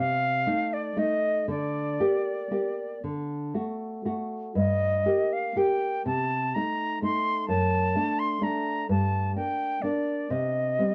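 A worn, warbling old-tape cassette sound with warbly pitch drift and moderate studio ambience frames this short cut from a yearning, solemn romantic duo in a rubato 6/8, where an airy silver concert flute sings the vibrato-laden, tongued melody high above a dark, woody nylon-string guitar whose thumb-plucked, full-bodied accompaniment of old strings moves through shadowed diminished and minor harmonies, both parts playing throughout the 10.9 seconds.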